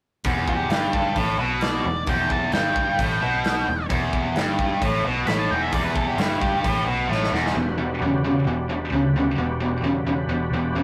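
Blues rock power trio with a southern rock edge, heavy and brooding in a straight 4/4, where a bright, double-tracked distorted guitar riff sits up front over a dark, foam-muted picked bass and a big-room rock kit with punchy kick, a dark octave-fuzz lead carries the melody until about 6.9 seconds, and after a drum fill at 7.1 seconds the drums drop out as a gritty overdriven tonewheel organ enters at 7.5 seconds with thick sustained chords through a slow rotary speaker, all captured in a rough rehearsal-room recording with moderate reverb, cut from a longer piece.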